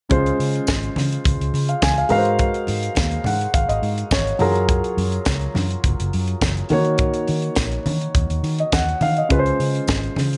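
A light studio reverb and a soft top end, with nothing above 10.9 kHz, give this short disco clip, cut from a longer piece, a snug and polished sound. The mood is joyful and celebratory, moving at 104 BPM in a straight 4/4 in Db major, with the harmony passing through Dbmaj7, Ab13, Gbmaj9 and Ebm7 before returning to Dbmaj7. An up-front concert grand piano carries the accompaniment with a warm tone and deep bass, and it plays a fill from 3.0 to 4.7 seconds. Beneath it, a vintage fingered electric bass sounds dark, round and foam-muted through its amp, while a tight funk drum kit sits close and mid-forward with hi-hat, a high-tuned snare and a tight kick. Very quiet congas add a thick-skinned, damped, saturated pulse, and a jingly, bright tambourine enters at 0.7 seconds, close, dry and very quiet in the mix.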